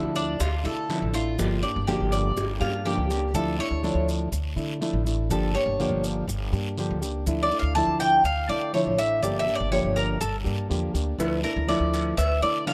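Latin Cuban son with a guajira lilt, this danceable, warm-toned excerpt at 122 BPM in D harmonic minor pairs a thumb-plucked flamenco guitar and a metallic, double-strung Cuban tres up front with a woody, thumpy upright bass, while grainy maracas and a raspy guiro sit close and dry, and tight, high-tuned bongos and cowbell ring from a distant room, playing a fill near 2.4 s before dropping out as the tres takes a solo at 3.3 s, then returning at 11.2 s.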